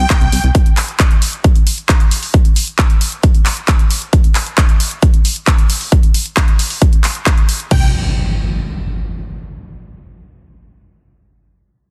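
A dense, heavily limited modern master in a digital ambience carries this soaring, bittersweet uplifting trance excerpt, where huge, bright, detuned supersaw chords with lush chorus, cassette-tape colour, delay and sidechain pumping join a punchy, funky, ring-modulated analog bass pluck only at the opening and again from 7.7 seconds, while an overdriven, up-front electronic kick and a layered big-room kit of crash cymbal, handclaps and hi-hat drive the stretch up to 7.8 seconds, and an electronic impact hits at 7.7 seconds and rings to the close at 9.5 seconds.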